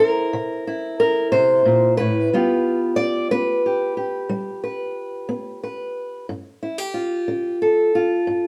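Soulful and rollicking, this 8.5-second acoustic country blues excerpt in G mixolydian rolls along in a straight 12/8 at 60 dotted-quarter beats per minute, with a dark, boxy old ladder-braced acoustic guitar fingerpicked up front as the solo voice, moving from C7 to G7 at 2.3 seconds, all captured live in one room with a moderate large-studio reverb.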